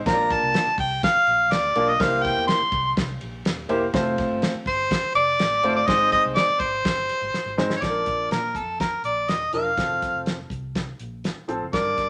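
A mellow harmonica with vibrato and scooped notes carries the melody from the first moment of this danceable 1960s-style soul excerpt, sitting up front over a concert grand piano with deep bass, a round, foam-muted vintage electric bass and a cloth-damped, thuddy drum kit with dark cymbals and a fat snare. The chords move from Bb through C7, F and Ab before a drum fill at 7.3 seconds leads into a new section at 7.8 seconds, where the harmony returns to Bb and then F. A wet studio reverb wraps the mix in a warm, roomy glow.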